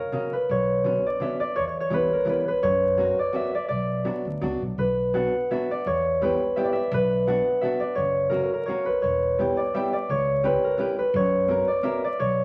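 A thumb-plucked concert harp opens this short musette at 0.0 seconds, carrying the melody up front with a bright, ringing tone in a whirling, nostalgic mood. An electric hollow-body jazz guitar joins almost at once, sitting lower in the mix as a dark, clean, picked and compressed accompaniment. From 0.5 seconds an upright bass adds a woody pizzicato line on steel strings. The waltz moves in three with a light swing on the eighths, turning through minor-key chords such as Bmadd9, Em, F# and a C#dim before settling back on F# at 11.1 seconds. A wet club reverb and a layer of vinyl crackle give the recording an old-time air, and the passage is cut from a longer piece.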